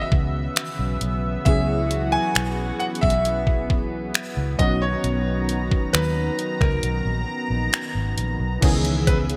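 Sensual and late-night in mood, this short contemporary R&B piece moves at a slow 67 BPM in a straight 4/4, cut from a longer piece. A bright grand piano carries the melody in a brilliant, natural tone, coated in lush chorus and delay, while warm analog keys with a round, detuned sawtooth and square-wave character and a sub octave supply decaying, mellow accompaniment with a filter sweep. A thick, airy unison pad holds sustained chords beneath them, its soft attack and noise layer adding shimmer over a C#m7, F#7sus4 and Bmaj7 progression. Up front, a vintage muted fingered electric bass sounds dark, amped and punchy, beside an overdriven, detuned 8-bit drum machine with a thumpy kick, finger snaps, hi-hat and crash cymbal that has a sampler-style, small-room grit. A break arrives at 6.8 seconds before the harmony returns to C#m7 at 8.6 seconds, all framed by a moderate hall reverb and a bright 1980s-style digital production.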